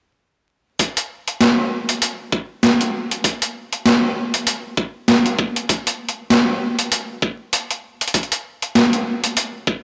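A swung 16th-note groove at 98 BPM in 4/4 drives this funky, gritty glitch hop fragment, where a compressed, pitched-down, overdriven boom bap sampler-style kit of hi-hat and high-tuned snare sits up front from 0.8 to 9.5 seconds, alongside a layered, knocking electronic kick playing from 0.8 to 9.8 seconds, in a dry hardware recording dusted with vinyl crackle and set in a lush hall reverb.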